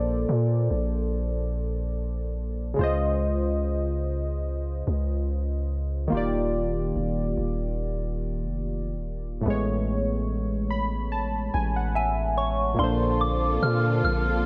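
An echo-heavy mix with light reverb and digital ambience frames this tender, dreamy contemporary R&B excerpt at 72 BPM, where round, sawtooth-edged analog keys with chorus and a filter sweep move through maj9 chords over a deep, sine-toned 808-style bass, the keys adding a fill from 10.3 seconds before a soft, pure FM synth bell carries the melody with dub echo from 12.0 seconds and, at 12.8 seconds, a lush, woody, bowed string section with vibrato arrives alongside a very quiet, dark pluck.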